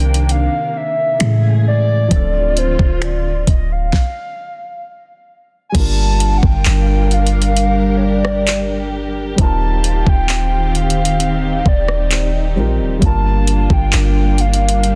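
Dry, dense and heavily limited, this late-night, sensual contemporary R&B piece at 66 BPM in G minor sets a hollow, woody clarinet-like synth lead with chorus, phaser and tape echo over dark, lush bowed strings, a mellow baby grand piano in the background with audible action noise, a deep, boomy 808-style bass up front, and a knocking electronic drum kit with a fat, softly clipped snare, metallic hats, finger snaps and handclaps, with a stop from 3.9 to 5.7 seconds.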